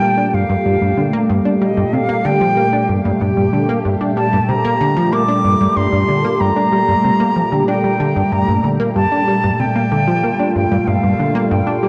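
A dark, warm production sits in a wet plate reverb with a 2.5-second tail, giving this short cut from a longer piece of ambient, sequencer-driven space music a mysterious, expansive air. At 94 BPM in a straight 4/4 and in G minor, it rests on a single Gmadd9 chord for its full 11.9 seconds. A phased analog pad holds sustained chords between Bb2 and G4, its detuned sawtooth tone and noise layer swirling and evolving through phaser and chorus with a slow attack and long release. Underneath, a plucky analog bass plays a riff from G2 to D4, punchy and funky, its sawtooth, square-wave and ring-modulated sound shaped by a fast filter pluck that decays into analog chorus and delay. Above them a concert flute carries the melody between Eb5 and D6, airy, warm and expressive with vibrato and tongued notes, trailed by its own delay. All three parts play throughout, from 0.0 to 11.9 seconds.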